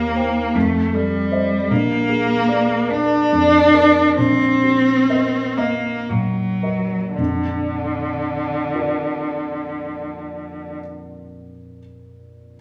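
Warm and lyrical, this romantic classical duo in a rubato 6/8 sets a rich, focused bowed cello with vibrato up front on the melody until 10.8 seconds, alongside a dark, mellow grand piano whose intimate, vintage accompaniment carries audible action noise to 12.6 seconds, all within a wet recital hall reverb as the music slows from 0.6 to 7.2 seconds and resolves onto Bb.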